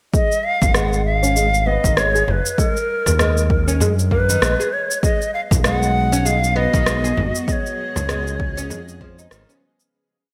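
A breathy, bright ney opens this short, earthy organic downtempo piece in G# dorian at 98 BPM, carrying an up-front melody of arching motifs with vibrato and delay. Alongside it from the start, a woody, fretless oud plucks a repeating 16-step arpeggio pattern through a low-pass filter sweep and delay, while a punchy electronic kick and a layered beat of electronic shaker and rim click, the latter with gated reverb, set a 16th-note swing groove. At 0.6 seconds a smooth, mellow synth bass joins up front with a dub-style line, and a compressed, saturated frame drum played with hard hands sits in the background. A cloudy granular pad arrives at 6.5 seconds with slowly shifting, blurred chords, pumping against the beat, just before a fade-out begins at 6.7 seconds. The harmony moves through G#5, D#m, B6 and C#7, and a lush digital hall reverb gives the bright, 1980s-style production its ambience.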